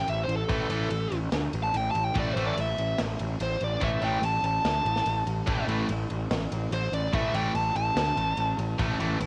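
A dark, overdriven lead guitar and a fuzzy, punchy picked bass open this driving, aggressive hard rock excerpt in A minor at 145 BPM, with the lead taking a solo that runs the whole clip in the range from A4 to A5. The tight metal drum kit joins at 0.1 seconds, its kick, snare and ride sounding saturated and gritty with a rolled-off top. From 0.5 seconds two picked rhythm guitars play the riff between A2 and A3: a bright, cranked stack guitar sitting in the background and a high-gain distorted guitar beside it. The bass stays up front under everything, while the lead carries a tape echo and a cassette-tape grain. The whole recording has the lo-fi character of a home cassette tape with light reverb, and it is cut from a longer piece, ending at 9.3 seconds.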